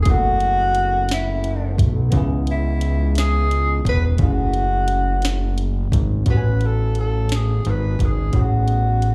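A breathy, dark tenor saxophone with light vibrato and scooped notes carries the sultry, late-night melody of this slow six-eight R&B excerpt in F# minor at 58 BPM, over a worn, slightly out-of-tune tine electric piano with lush chorus and slapback echo, a fat, saturated analog bass, and a produced drum kit with a soft kick and sharp snare entering at 0.1 seconds, all heard as a live gig through a club's PA with club reverb.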